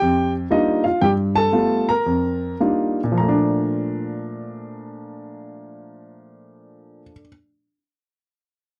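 An intimate, up-front grand piano, with its action noise clearly audible, plays relaxed, playful solo swing jazz in 4/4, slowing over the first 3.2 seconds as it moves between F13sus4 and G9 chords before settling on Bbmaj7, all in a dry, close 1970s-style studio sound with light reverb in this short fragment cut from a longer piece.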